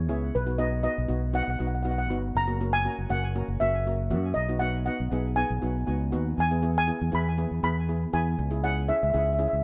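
Sunny and bouncy, this calypso excerpt moves at 119 BPM in a straight 4/4 over a B, F#7, B6, E and C#m progression. A mellow, vintage-sounding lead steel pan played with soft rubber sticks carries the melody up front with a touch of delay. Beneath it, a dry, close-miked double seconds pan with a full tone adds accompaniment, while a fingered electric bass, direct and amped, sits prominently in a lightly reverberant room.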